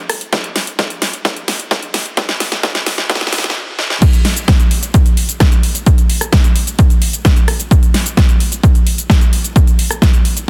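A straight 4/4 pulse at 130 BPM drives this euphoric, uplifting EDM fragment, with a big-room dance drum kit of crash, metallic hats, rim click, shaker and a huge snare running a fill through the build-up before the drop hits at 4.0 seconds. Alongside it, an up-front electronic kick drum, punchy and overdriven, enters at 0.3 seconds and anchors the groove. The dry, dense mix is heavily limited and has a modern edge, with both drum parts layered and pushed forward.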